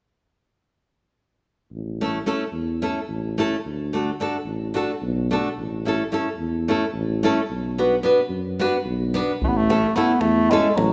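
Festive and virtuosic, this short excerpt of Balkan wedding-band folk moves at 219 BPM in a straight 7/8 in A major, with a dark, smooth-topped tuba carrying the bass and an up-front, fingerpicked nylon-string guitar supplying classical-style accompaniment through A, D, A and B minor. At 9.4 seconds a warm bass clarinet takes the solo melody up front while a tight, close davul joins in the background. The whole is set in a moderate recital-hall reverb.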